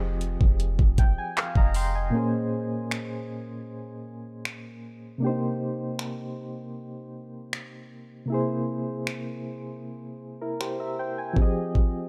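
This moody, sensual contemporary R&B excerpt opens with mellow electric-piano-like synth keys, treated with chorus and tremolo, over a deep, round 808-style bass that sounds only until 2.1 seconds. A smooth, electronic drum kit enters at 0.2 seconds with a knocking kick, metallic hi-hats, finger snaps and handclaps, sitting up front with a small-room character. The tempo is an unhurried 78 BPM in straight 4/4, in Bb dorian with a tuning of A4 = 437 Hz. The keys play a short fill from 0.6 to 2.1 seconds, then carry the harmony through Bbm9, Cm7 and C7b13 before settling back on Fm7. Digital ambience and a dark, warm production give the track its moody character, and the clip is cut from a longer piece.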